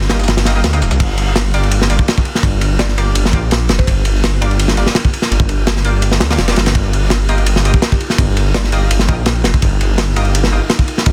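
A crunchy, saturated breakbeat kit with a tight kick and dark cymbals drives this dark, nostalgic 167 BPM drum and bass excerpt in G minor, joined up front by a thick, menacing detuned saw bass, while a bold, bright orchestra-hit-like stab with dub echo cuts through, a gritty electronic snare and tambourine sit in the background until 1.0 s, a very quiet woody mallet-like pluck surfaces at 2.8 s, and an ethereal, airy pad holds Ebadd9 and Gm7 chords underneath in a dense, heavily limited mix.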